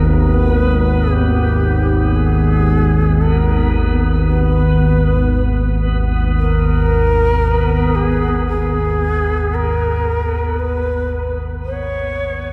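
In free time, this dark, ominous ambient fragment in G# harmonic minor rests on a G#madd9 chord, with an up-front, detuned, warbling analog drone with chorus holding the low register while a reversed, granular synth texture with its own reverb and a distant, breathy bamboo shakuhachi with vibrato and a diffuse delay fade in from 0.0 seconds, all set in a wet cathedral reverb before the whole passage fades out from 7.8 to 12.5 seconds.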